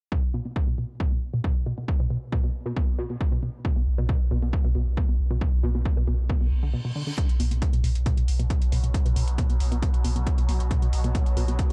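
A punchy, up-front electronic kick and a tight, detuned sawtooth synth riff open this hypnotic, industrial stretch of driving peak-time techno, with a filter sweep running over the riff as it pumps through chorus, phaser, overdrive, tape grit and delay. A deep, thick sub bass with tube saturation arrives at 3.8 seconds, and after a brief break marked by a reverse cymbal, metallic hi-hats come in at 7.2 seconds. A swarming, warbling drone of detuned sine voices with granular texture and its own reverb joins at 8.4 seconds, set in a dark, dry production.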